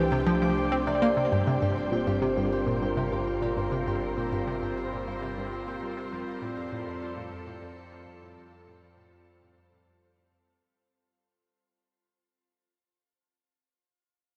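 Ambient, sequencer-driven space music in G minor at 100 BPM, mysterious and expansive, this excerpt opens on a Csus2 chord before settling on G minor at 1.3 seconds and moving to F6 at 6.1 seconds. An up-front analog pluck riff with a round, detuned, ring-modulated tone and cassette-tape grit sits over a low pulse-width-modulated analog drone. Sounding alongside them from the start are an evolving, morphing wavetable pad, a bubbling stepped-filter texture with resonant random filter steps, and ringing fingerpicked concert harp arpeggios with delay. All of it is bathed in a wet shimmer reverb with a long tail, while the harp and the pluck fade out from 1.3 seconds, the harp lingering alone until 13.3 seconds.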